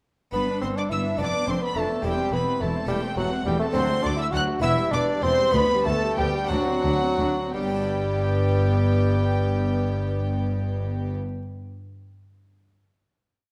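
A dark, warm recital-hall sound with a wet reverb frames this short, lively and festive baroque-style concerto movement in G major and 6/8, where an up-front mellow bassoon doubles the violins' tune at the octave, a second violin section also doubles the tune an octave lower, a dark, distant viola section rocks a two-note figure and sustains chords, a background harpsichord with a brilliant, plucked tone rolls chords, and cellos with repeated bass notes join a rich double bass section on the bass line, the ritornello slowing from 2.9 s before settling onto a final G chord at 7.5 s.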